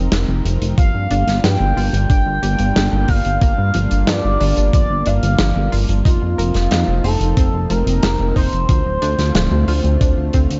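A thumpy, sampler-style electronic kick drum stands out most in this driving, moody synthwave excerpt in G minor at 91 BPM, entering at 0.8 seconds with a tape-warmed, small-room character. Beneath it, a glossy, up-front chorused synth bass blends pulse and sawtooth tones with ring modulation and wave-folding, its filter-plucked notes pumping to the sidechain, while a smooth, detuned analog pad holds sustained chords with a slow attack and long release, also chorused and pumping. A big rock drum kit adds hi-hat and a medium-tuned, mid-forward snare from a large room, its top rolled off. From 0.8 seconds an expressive synth lead sings the melody with soft attack, vibrato, subtle chorus and tape echo, as a round analog pluck sits in the background spinning bright arpeggios through chorus, cassette tape and tape echo. The harmony moves from F7sus4 to Gm7, returns to F7sus4 at 6.1 seconds and lands on Dm7, all within a dark, dry production that shows little reverb.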